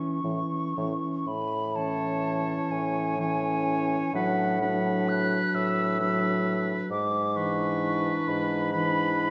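Classical chamber music for wind quintet, this slow romantic movement in A major is tender and unhurried, moving at roughly 38-45 BPM in a rubato 6/8 that breathes freely. The hollow, airy concert flute carries the melody from the start, sitting close to the ear with a crisp attack and a warm vibrato. Beneath it, a bright clarinet with a soft attack and a dark, smooth-topped French horn supply the accompaniment, and a clear, up-front bassoon enters at 0.2 s to anchor the bass with a light vibrato. A brief opening passage gives way to a new section at 1.3 s, and the oboe joins shortly after at 1.7 s with a clear, softly attacked second line. The harmony moves from A through Bm7/A to E7/G#, and the whole ensemble sits in a resonant recital hall whose lingering reverb gives the fragment, cut from a longer piece, a glowing sense of space.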